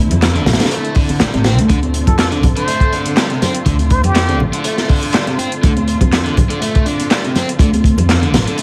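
A small room ambience and a layer of vinyl crackle frame this short funky breakbeat cut, which moves at 122 BPM in 4/4 with a light swing on the sixteenths and sits in D minor on a single Dm7 chord. Up front, a crunchy breakbeat kit drives the groove with a tight kick, a medium-tuned snare and hi-hat, its saturated, rolled-off sound giving the track a raw edge. Behind it, a punchy analog drum machine adds handclaps and hi-hat, re-recorded in a small room, while high-tuned congas ring out dry and close in the background. A woody, dark pizzicato upright bass anchors the low end, and a bright, overdriven, double-tracked electric guitar riff enters at 0.4 seconds. A veiled, distant string section holds muted chords beneath, roughened by vintage 12-bit sampler grit and pumping from sidechain compression. From 2.1 to 4.4 seconds a raspy, growling plunger-muted trumpet takes a brief jazz-style solo with scooped notes and wah-wah inflections, coloured by an old record sound and delay.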